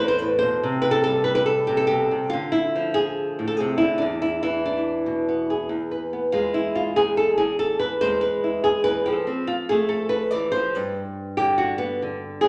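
Fiery and intense, this fragment of a longer flamenco piece moves at 142 BPM in E phrygian dominant, with a single warm, fingerpicked acoustic guitar placed up front, its finger squeaks audible through a wet, large studio reverb, as it passes from Asus2 through Dm and E5 before launching into a solo at 5.7 seconds over E, F and G.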